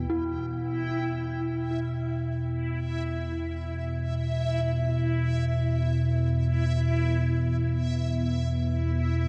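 A deep, rumbling, wave-folded drone sits up front from the opening moment beside a reversed, granular texture that swells bright and dreamy in a higher register, while an eerie, inharmonic FM bell tone, treated with chorus, phaser and delay, enters at 0.1 seconds in the background and a filter sweep moves across the drone, the whole dark ambient excerpt steeped in a huge reverb that makes it feel cavernous and unsettling.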